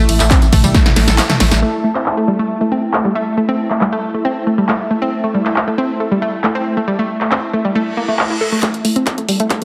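This intense, hypnotic piece of driving peak-time techno opens on a drop at 137 BPM in straight 4/4, with a bright, round analog pluck riff and an ethereal, airy pad sounding together over an A5 chord. A thick, saturated sub bass and a punchy analog drum machine enter almost at once, and the bass stops at 1.6 seconds. The drum machine brings handclaps, hi-hat, ride cymbal, a punchy snare, tambourine and toms with a tape-warm character, while an overdriven electronic kick hits hard up front in a brief burst. The pluck, carrying chorus and dub echo, pumps with the sidechain along with the sub bass and the mellow, detuned pad, which is dressed in ensemble chorus and its own reverb. A reverse cymbal sounds at 7.9 seconds, leading into a build-up where the heavy kick returns at 8.6 seconds amid a drum fill. It is all set in a moderate digital room reverb with a heavily compressed, radio-like sound, and it is cut from a longer piece.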